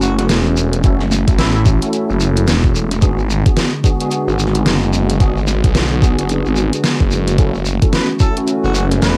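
Gritty and swaggering, this glitch hop excerpt moves at 110 BPM in F# minor with swung sixteenths, shifting from F#m7 to G#m7b5 and back with a cassette-worn, small-booth sound. Up front are a swirling, saturated detuned saw bass, an overdriven, knocking electronic kick that arrives at 0.8 seconds, and a pop kit with a deep snare and hi-hat. Around them, a grainy shekere sits close, bright tine electric piano stabs pump through ensemble chorus and analog delay, and a warbling, nostalgic pad glows behind, while a mellow jazz-style harmonica solo with light vibrato, scooped notes and tongue slaps opens the clip in the background and returns at 7.9 seconds.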